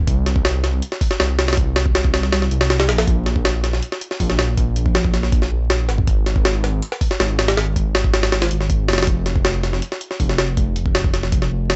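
A straight 4/4 drum and bass pulse runs at 160 BPM in F minor, driven by a jungle sampler-style drum kit that enters at 0.1 seconds with hi-hat, a thumpy kick and a high-tuned snare, its pitched-up, compressed hits sounding gritty and sitting up front. Beneath it, a dark detuned saw bass starts at 0.0 seconds and holds the low end between F1 and C2, its beating sawtooth unison voices and sine layer giving a deep, rumbling tone. The bass has a fast attack and sustained, saturated notes, and it too sits up front alongside the drums. Vinyl crackle and a digital ambience frame the pair, with the top of the sound rolled off above 7.9 kHz, giving the jungle groove a nostalgic, shadowy cast. The whole passage is one continuous section lasting to 11.8 seconds, cut from a longer piece.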